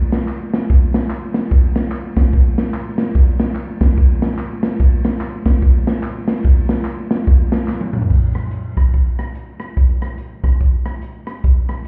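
A swinging big-band drum kit opens this soulful, solemn gospel passage, with a punchy kick, a medium-tuned snare, an airy, polished hall character and ride, hi-hat, crash, rim clicks and toms all up front, joined from the start by a close, dry layer of tube shaker, tambourine and group handclaps sitting much lower in the mix. A drum fill at 7.7 seconds leads into a new section, and the tambourine and handclaps drop out at 8.0 seconds, leaving the drums alone until the cut at 11.9 seconds. The whole passage sounds muffled, as if heard through a wall, inside a moderate club-like room reverb.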